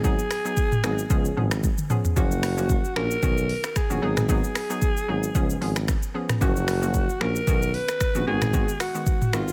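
Afrobeats at 113 BPM with a gently swung sixteenth-note feel, this short, dry excerpt carries a romantic, breezy mood over a G#m7, C#7, F#maj7, Badd9 progression. A raspy, gritty alto saxophone with vibrato and a smooth top sings the melody, while a hollow, warbling square-wave pluck with chorus bounces through the accompaniment and a warm tuba with light vibrato supplies the bass line. Up front, an electronic afro-pop kit of deep kick, dark hi-hats, snaps, rim clicks, shaker and toms drives the groove, with a drum fill at 1.6 seconds.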